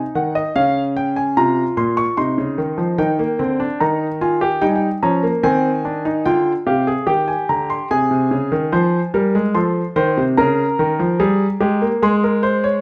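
In a straight 3/4 at 73 BPM, this baroque-style three-part fugue for solo concert grand piano moves with a solemn yet driving pulse, settling into F minor from 7.9 s in this fragment of a longer piece. The piano sits up front with an intimate, natural tone, deep bass and audible action noise, spanning Bb2 to Db6. A moderate stone-room reverb adds a sober, resonant space around the counterpoint.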